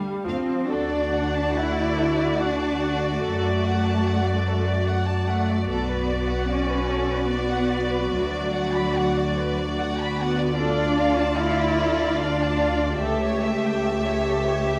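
A wet scoring-stage reverb surrounds this melancholic, elegiac fragment of a slow romantic movement for string orchestra at 73 BPM in a rubato 3/4, where violas begin a warm, smooth-topped accompaniment at 0.0 s, rich first violins with vibrato carry the melody, soft-attacked second violins add an expressive second line, cellos with portamento and clear, intense, up-front double basses hold the bass, and the D major harmony darkens to D minor at 10.6 s.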